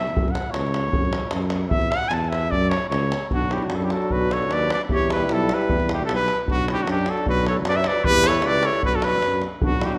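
A warm trumpet leads with light vibrato up front over a mellow, soft-attacked tuba bass and a tight, distant davul in this restless, bittersweet Balkan brass band piece at 152 BPM in swung 2/4. The key moves from F# minor to B minor at 3.3 s, where a clarinet second line and a smooth-topped trombone join in the background alongside a very quiet euphonium, all set in a moderate scoring-stage reverb.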